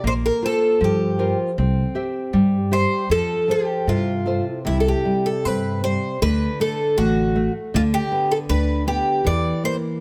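From the first moment, a picked twelve-string acoustic guitar carries the melody in this nostalgic, tender fado-style ballad, its shimmering, octave-doubled tone sounding woody and boxy from old strings. Beneath it, a fingerpicked nylon-string guitar plays a classical accompaniment on fresh strings, with an audible finger squeak. An upright bass plays pizzicato on gut strings, giving a dark, thumpy foundation. The music moves in a rubato 2/4 at about 78 BPM, starting in F major and shifting to C major at 4.7 seconds, where the harmony passes from C5 to D5 and arrives on a rootless C7/E. All three instruments sit up front, captured by close, detailed microphones in a nearly dry room. The bass stops at 9.5 seconds and the twelve-string at 9.8, leaving the nylon-string guitar alone for the final moment of this cut from a longer piece.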